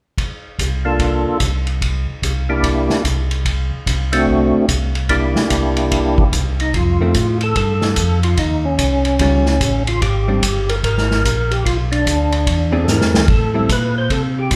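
Recorded live in one room with a moderate large-studio reverb, this greasy, bluesy soul jazz organ trio excerpt swings, setting a punchy, dark-cymbaled vintage drum kit beneath a round, lightly overdriven tonewheel organ bass line and an up-front, fat, key-clicking percussive tonewheel organ melody, both colored by slow rotary speaker and chorus vibrato, while a clean, compressed hollow-body jazz guitar adds accompaniment from 7.0 s to 13.7 s and a drum fill lands at 12.9 s.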